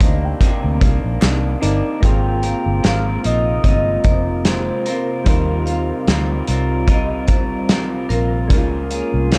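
A lazy 74 BPM groove in 4/4 with a light 16th-note swing drives this hazy, nostalgic slice of indie and bedroom pop, anchored by a punchy, up-front indie drum kit with gritty sampler texture and a round, foam-muted electric bass. A full, dark octave-layered synth lead carries the melody with phaser, chorus, delay and vibrato. It sits over a slightly broken-up, lo-fi guitar with warbly pitch drift, mellow electric-piano-like keys with cassette-tape character, and a very quiet, swirling analog pad, while a hollow group handclap pops up at 1.2 seconds; from 2.4 seconds a bright, ringing vibraphone adds a second line in the background as the chords move from Cm9 through Ab69 and Eb69 to Db6, inside a dark, warm production with light reverb.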